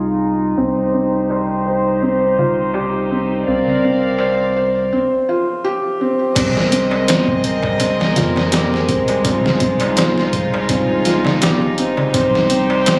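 Brooding and cinematic, this trip hop excerpt moves at 83 BPM in 4/4 with a slight swing on the sixteenths, opening under a filter sweep that runs through its first 6.4 seconds. A studio violin section holds sustained chords from the start, bowed sul tasto with a pure, floating tone and a smooth top, while a soft dub sub bass sits deep and round beneath it. At 0.6 seconds a felt-muted upright piano enters with mellow, intimate arpeggios, its short sustain and audible action noise roughened by vintage 12-bit sampler grit and trailed by delay. A very quiet darbuka with a crisp metal shell joins at 1.3 seconds, and at 6.4 seconds a muffled, sampler-style drum kit arrives up front, compressed, pitched down and overdriven, with a thumpy kick, medium-tuned snare, hi-hat and crash. The harmony drifts around a C pedal through Fm7, Cm, Bbadd9 and Abadd9 colours, and the whole mix has the low-passed feel of a phone recording made in the room, with club reverb, small room ambience and light reverb.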